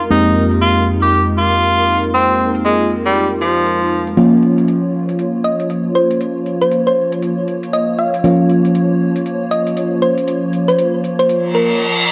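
Deep house at 118 BPM with a swung 16th feel and a moody, late-night air, opening on a bright, vibrato-laden jazz tenor saxophone solo with scooped notes and tape echo that ends at 4.1 seconds, over a hollow, flute-like warbling pad, round full-bodied FM electric piano stabs darkened by chorus, phaser and filtering, and a tape-warm electronic hi-hat tucked in the background, while a gentle, tine-like thumb-piano synth pluck carries the melody from 5.4 seconds, after the shift from Fm11 to Bbm/F, before a reverse cymbal rises up front at 11.5 seconds, all in light reverb.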